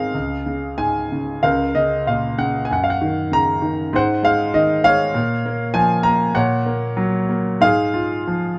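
Closely miked and detailed, with only a trace of room, this brief fragment of a longer classical piece places a concert grand piano up front, its smooth, vintage tone resting on a deep bass. The lone piano plays a lyrical, relaxed line in 4/4 at about 96 BPM, stretched with rubato so the beats fall unevenly, and it spans the keyboard from Db2 to Bb5 for roughly 8.6 seconds. A sequence of chords, moving from Bbm/Db through Gb and Ab to Fm/Ab, gives the passage a warm, unhurried glow.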